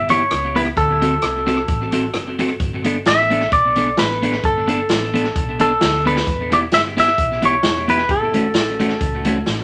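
A clean, twangy electric guitar carries the melody up front in this energetic, driving ska excerpt, joined by a second, slightly broken-up guitar with tape echo on accompaniment, a dark, round hollow-body bass, and a swinging big-band drum kit with a punchy kick and its own tape echo that lands a fill at 9.5 seconds, as the chords move from Em through D7 and Gadd9 to F#m.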